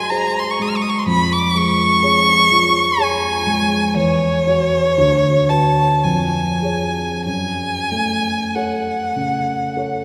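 A single bowed violin carries the melody from the first second, its warm tone shaped by expressive vibrato and portamento as it sings between C#5 and E#6. This is a romantic classical duo in F# minor, elegiac and solemn, moving slowly in 3/4 at around 45 to 63 BPM with a flexible, rubato feel. A dark, mellow concert grand piano accompanies throughout, reaching down to a deep bass on D2 and staying beneath the violin's line. Both instruments sit up front, wrapped in a long, wet church reverb that lets each phrase linger for about 3.5 seconds. The harmony passes through G#7/F#, C#/E#, F#5/E and Bm/D before settling on F#m at 7.3 seconds, in this ten-second fragment of a longer piece tuned to A4 = 439 Hz.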